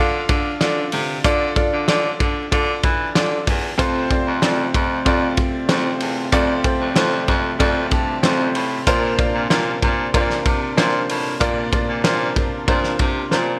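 A straight 4/4 pulse at 94 BPM carries this hopeful piano-driven pop excerpt in F major, with a loose indie drum kit coming in at 0.3 seconds on kick, snare, hi-hat and ride. The kit sits up front with a punchy kick, a fat snare and a gritty, saturated tone with a rolled-off top, all framed by gated reverb, and a drum fill arrives at 13.3 seconds. A concert grand piano provides the accompaniment from the start, intimate and natural with deep bass and audible action noise. A baritone saxophone takes the bass role in a vintage jazz style, with light vibrato and scooped notes. From 3.8 seconds a percussive tonewheel organ adds sustained chords in the background, with third-harmonic percussion, key click, chorus vibrato and a stopped rotary speaker. The harmony moves from Dm to F and then to Bbadd9, and the bright 1980s-style digital production wraps the band in a moderate plate reverb that gives the whole a warm, hopeful glow.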